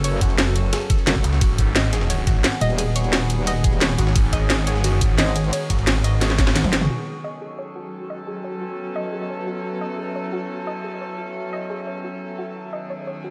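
This excerpt of dark, tense technical drum and bass at 175 BPM in F# dorian opens in the middle of a drop: an up-front drum and bass kit with a cracking snare, bright hats, ride and toms, a very quiet, gritty, pitched-up breakbeat layer underneath, and an aggressive, wobbling metallic bass with chorus. Almost at once a knocking electronic kick and a snarling, growling distorted saw bass join, the saw bass pushed to the front with overdrive and sidechain pumping. Above the low end, an eerie, inharmonic drone holds sustained chords with chorus and reverb, while a soft, round pluck plays mellow arpeggios through chorus and delay. A cloudy, blurred granular pad drifts in the background, and the harmony moves between F#m and G#m. A drum fill at 6.2 seconds and a band accent lead to 6.9 seconds, where the drums and both basses fall away, leaving the pumping drone, pluck and pad for the rest of the clip, all in a dark production with light reverb.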